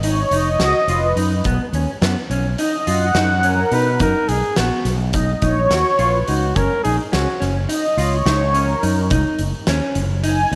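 Driving and intricate, this progressive instrumental moves in 9/8 at 212 BPM in eighths, with a detuned, nasal sawtooth pad taking the lead with chorus, ring modulation and a filter swell over G#m, Bmaj7 and F#5. A dark, clean, fingered electric guitar plays arpeggios in spring reverb, while an up-front fretless bass and an oversized low-tuned kit with a boomy kick and fat snare in a bright stone room drive the groove. A mellow, present flugelhorn adds a jazz-style second line with vibrato from 3.7 to 7.5 seconds, all within light small-room ambience, in a passage cut from a longer piece.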